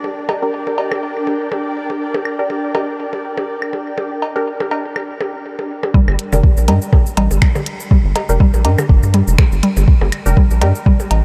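This excerpt from a longer minimal techno track opens at 0.0 seconds in G minor with a sparse, hypnotic bed: tape-warm percussion blips, cowbell and woodblock with delay, a bubbling, bright stepped-filter texture, and an ethereal, airy pad, both of these carrying chorus, built-in reverb and sidechain pumping. A muted, deep dub chord stab joins at 0.4 seconds, its detuned sawtooth tone colored by phaser, subtle chorus, vintage 12-bit sampler grit and delay. At 5.9 seconds the drop arrives at 122 BPM in 4/4 with a light 16th-note swing, bringing a soft, up-front electronic kick and a woody, round, mallet-like FM pluck riff drenched in diffuse ambient delay. A rubbery, hollow square bass with sidechain pumping sits up front from 6.1 seconds, and a minimal click kit of finger snaps, clicky hi-hats and shaker, low-pass filtered, fills out the groove. The whole mix is dreamy and soaked in a huge ambient reverb, its tuning sitting slightly below standard pitch.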